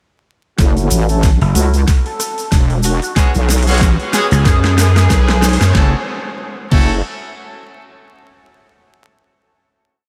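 A swaggering, playful glitch hop piece opens at 0.6 s with a heavy, detuned wobble bass and a knocking electronic kick up front, a dubstep kit with a huge snare and metallic hats on a swung, edited beat, a grainy shaker in the background, and brilliant, syncopated horn stabs that pump under a filter sweep through the build-up and drum fill. A growly, overdriven slap bass joins with chopped phrases, while an edgy, tearing sync lead with vibrato adds short phrases above a background riser as the harmony moves from F#m7 to C#7sus4. At 5.8 s the music settles on a final F#m7 chord in a dreamy mix soaked in long reverb and vinyl crackle.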